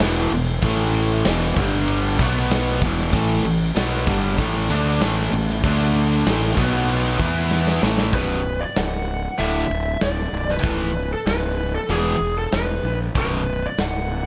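A straight 4/4 groove drives this aggressive, heavy hard rock fragment, with a big acoustic rock drum kit up front: hi-hat, bright crash cymbals, a medium-tuned snare and a punchy kick, all sounding in a large room. Beneath it, a fuzz-soaked fingered electric bass growls loud in the mix. Two bright, picked guitars, one through a cranked stack and one overdriven, play riffs further back, while a very quiet, double-tracked and compressed distorted guitar adds a third riff until 8.1 s. A drum fill at 7.5 s leads into a new section where a dark, lo-fi lead guitar, overdriven through a small cranked amp, steps forward with a melody over shifting power chords. Moderate studio reverb surrounds the band, and a faint mains hum sits underneath.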